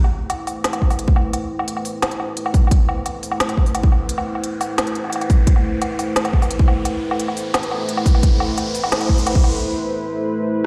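Heard through a big sound system in a bare stone room with light reverb, this cinematic, spacious half-time drum and bass build-up at 174 BPM in A minor pairs a deep, moody, detuned sawtooth pad holding an Amadd9 chord with chorus and sidechain pumping, an up-front organic electronic kit of woody snare, crisp hi-hats, rim click and woodblock, and an overdriven, hard-clipped electronic kick entering at 0.8 seconds, while an electronic riser runs from 2.0 seconds until a brief break at 9.6 seconds.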